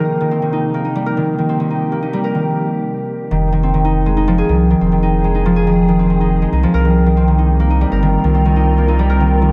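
IDM at 140 BPM in F minor, this cerebral, eerie fragment of a longer piece sets a fingerpicked concert harp, ringing and up front with analog delay, over a glassy FM pad that sustains chords in the background with ensemble chorus and its own ethereal reverb. After a brief break from 2.5 to 3.3 seconds, a round sine sub bass enters at 3.3 seconds, deep and up front, as the harmony moves from Cm7 to Fm7 and back to Cm7. A moderate plate reverb and an echo-heavy mix give the sound a spacious, haunted depth.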